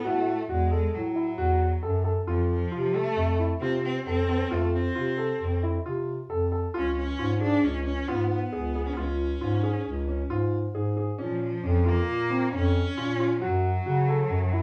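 Restless yet hypnotic, this contemporary chamber piece moves at 135 BPM in an uneven 5/4 metre with a straight feel, and is cut from a longer work. A single bowed cello carries the melody from 0.0 to 14.6 s, its rich tone shaped by expressive vibrato and portamento. Alongside it, a concert grand piano spins arpeggios with deep bass, a slightly boxy character and long sustain. A dark, smooth-topped bass clarinet, played in a classical style and sitting up front, holds down the bass line. The harmony travels from A5 through F, C#, A#m and F#m, and light reverb gives the trio the feel of a small room.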